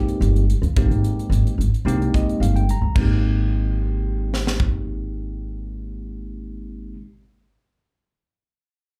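A straight 4/4 groove at 110 BPM drives this short, bright and funky slice of electric jazz fusion in Ab major, cut from a longer piece and opening on an Abmaj9 chord. A crisp fusion drum kit sets the pulse with crash cymbal, hi-hat, punchy kick and a high-tuned snare, sounding airy and polished up front, and it plays from 0.1 to 4.7 seconds. Beneath it, a pizzicato upright bass with steel strings gives a woody, thumpy low end, also up front and running from 0.2 to 6.9 seconds. The bell-like tine electric piano carries the accompaniment with a clean, direct tone colored by phaser and slapback echo, and it slips in a fill between 1.9 and 3.0 seconds as the music moves into a new section. The whole thing sounds like a live gig heard through the venue's PA, with a touch of club ambience yet little reverb overall.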